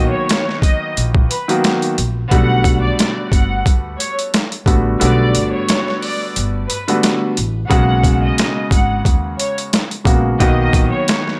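A soulful boom-bap hip-hop excerpt at 89 BPM opens with a lush, bowed violin section carrying the melody from a distance through filtering and digital delay, over a polished grand piano with cassette-tape color, a woody pizzicato upright bass, and a gritty, overdriven sampler-style drum kit with a thumpy kick and high-tuned snare, swung slightly in a small room, moving through Bmaj7, Gmaj9 and G#m11 chords while the kick drops out from 5.0 to 7.7 seconds.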